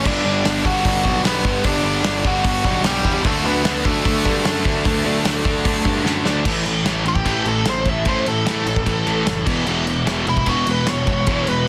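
Rebellious and rowdy, this straight-ahead punk rock clip at 150 BPM pairs a nasal, overdriven lead guitar with a parked wah and digital delay against a bright, overdriven rhythm guitar, a dark, lo-fi double-tracked garage guitar and a sludgy, very quiet distorted guitar, all churning riffs over a growly fuzz bass. An up-front, loose indie drum kit with a punchy kick, dark cymbals and a pumping room sound drives the chords from G to D, and a drum fill at 6.0 seconds sets up a lead guitar solo from 6.4 seconds over A5 and E. The dense, heavily limited mix is dry, cut from a longer piece.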